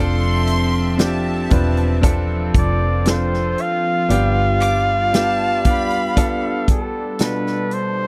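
A heartfelt, hopeful pop ballad at 58 BPM, where a clear, vibrato-rich flugelhorn takes the melody from 2.6 s over an intimate concert grand piano with audible action noise, a lush detuned sawtooth pad with chorus, a dark foam-muted electric bass, a natural country drum kit of punchy kick, snare and hi-hat entering at 0.5 s, and a smooth bowed violin section on a second line until 6.4 s, all captured in a dry, close 1970s-style studio sound moving from F6 to G7.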